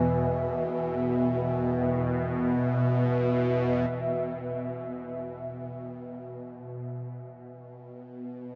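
A bass clarinet in classical style murmurs in the background with delay, while a tense, bright, string-like bowed-like drone with phaser, vibrato and a noise layer sits up front and a bubbling, resonant texture of random filter steps shimmers with chorus, opening this ominous, vast dark ambient piece in free time; the clarinet stops at 2.6 seconds and the texture at 3.9 seconds, after which the drone fades in alone through a huge, wet reverb.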